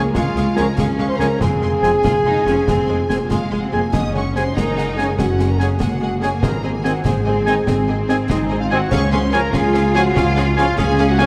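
Adventurous and heroic, this cinematic film-score excerpt moves at 96 BPM in 12/8 in Db major, with a lush studio violin section carrying the melody in the background over symphonic violins on a smooth second line, focused violas and clear cellos, and a rich, distant double bass section anchoring the bass. Mellow, roomy French horns and a very quiet, close-miked trombone section hold sustained chords, a solo trumpet adds smooth-topped stabs on Ab5 from 0.6 s, a bright, ringing harp plays very quiet arpeggios, and dry snare, bass drum and clash cymbals fill out the percussion, with round soft-mallet timpani sounding briefly at 6.4 s. The harmony travels from Db through Fm, Gbsus2 and Ab back to Db, all set in a dark production with moderate concert hall reverb.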